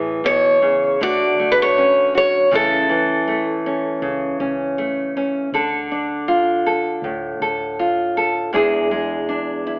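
An intimate, heartfelt acoustic folk-pop ballad excerpt in a straight 4/4, where an up-front fingerpicked nylon-string guitar with deep classical tone and audible finger squeak carries the chords from Amaj7 through Dm to E7, a woody, boxy picked ladder-braced acoustic guitar on old strings sings a short melody from 0.3 to 4.8 seconds, and a dark, round, foam-muted electric bass sits in the background, all heard through a large studio reverb and a narrow telephone-like filter.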